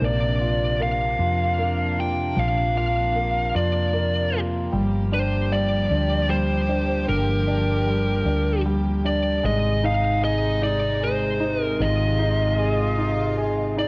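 A biting, overdriven lead guitar carries the melody up front in this melancholic, dramatic six-eight pop ballad, cut from a longer piece. Beneath it, a polished grand piano plays accompaniment, a chamber string section holds bowed, reedy chords with light vibrato and a gut-string tone, and a dark, round fretless electric bass adds woody low end colored by transformer saturation and analog chorus. The harmony moves from Bbadd9 to Gm7 at 4.7 seconds and arrives on Ab at 9.4 seconds, the whole recording wrapped in moderate scoring-stage reverb and the warbling pitch drift of worn cassette tape.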